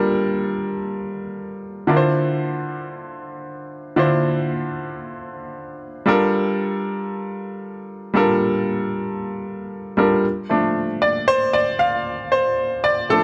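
A clear, natural-sounding baby grand piano opens this short disco excerpt on its own, its short-sustained notes sitting up front at a driving 115 BPM in straight 4/4, tuned to A4 = 443 Hz. Ranging from D3 to F5, it moves through a sultry Gm7 to Dm7 and back to Gm7, then shifts to F6 at 10.2 seconds and plays on solo until the piece is cut at 13.2 seconds, framed by a light reverb.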